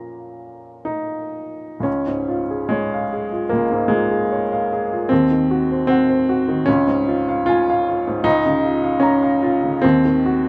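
A clear, woody upright piano sits up front in this melancholic, wistful romantic nocturne excerpt, its polished, present tone unfolding with rubato in a moderate studio ambience as it moves from a brief opening on Bbm into a longer passage that turns through Db, Cdim/Eb and Bbm/Db before being cut off at 10.5 seconds.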